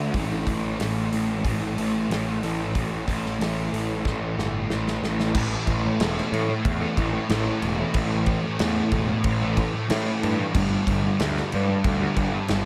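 Melancholic and hazy, this shoegaze and dream pop rock excerpt sets a double-tracked, distorted fuzz guitar riff with ensemble chorus over a growly, overdriven picked electric bass and a loose indie drum kit with dark cymbals and a punchy kick, all soaked in a cathedral-like reverb, with a drum fill from 4.0 to 5.3 seconds leading into the second section, and the harmony later moving from A5 to G5 at around 10.5 seconds.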